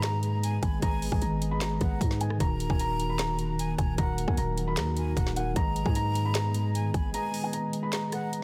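A growling, buzzy 808-style bass sits up front in this brooding, dark trap excerpt at 152 BPM with a half-time feel, dropping out at 7.1 s for a short break while the rest carries on to the end. A produced trap kit with a hard-clipped kick, woody snare, metallic hats, handclaps and rim clicks drives beneath a soft, felt-muted upright piano melody, filtered and touched with digital delay, joined by a breathy jazz flute second line that also carries delay. A clean tine electric piano and a very quiet, ethereal pad with chorus and a slow attack fill out the Abm and Ebm chords, all sealed in digital ambience and a dense, heavily limited master.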